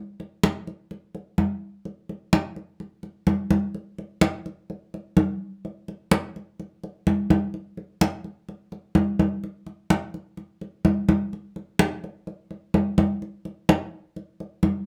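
Sunny and danceable, this short Latin excerpt moves at 127 BPM in a straight 4/4 feel, carried entirely by ringing, medium-tuned acoustic congas that sit up front in a small room. The drums come in at 0.2 seconds and play through to 14.9 seconds, with a moderate studio reverb adding a touch of space. Around 11.3 seconds the piece moves into a new section, giving the cut a brief change of direction before it ends.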